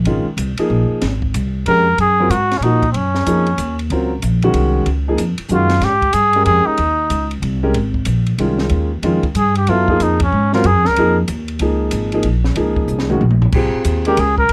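A warm, vibrato-tinged trumpet leads this open, spiritual modal jazz waltz in swung 3/4, its soft-attack solo phrases arriving at 1.7 seconds over a growly, woody pizzicato upright bass, a clear, vintage upright piano with long sustain, and a dark, compact cocktail drum kit with a punchy kick and high-tuned snare, all captured by close, detailed microphones in a dry room, with a band accent at 10.2 seconds and a drum fill from 12.9 to 13.5 seconds in this fragment of a longer piece.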